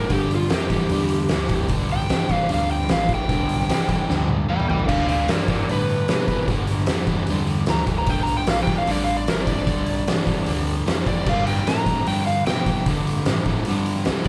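Captured live in one room with a large studio reverb, this driving, swaggering blues rock and southern rock fragment pits an overdriven slide guitar solo against a double-tracked, hollow-bodied semi-hollow guitar riff up front, a growling fingered electric bass with warm, punchy overdrive, and an oversized, low-tuned drum kit with a fat snare, a punchy kick and a dark, saturated stone-room sound that breaks into a fill at 4.1 seconds.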